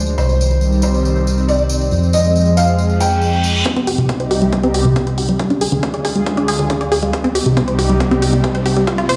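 Uplifting trance in C minor at 138 BPM, emotional and soaring, this short cut opens with a soft, felt-muted upright piano carrying a tape-echoed second line over a lush, detuned unison pad with chorus and phaser, a fat sawtooth bass pumping against the sidechain, and a jingly tambourine, moving from Cm to Fm. At 3.7 s the piano, bass and tambourine drop away as a punchy electronic kick and analog hi-hat, re-recorded in a small room, arrive with a detuned unison pluck arpeggio that gets a filter sweep and cassette-tape colour through a build-up over Cm, Ddim and Cm. A background reverse cymbal and riser bridge the two halves, and the whole mix sits in a moderate recital-hall reverb with the feel of a big system in a bare room.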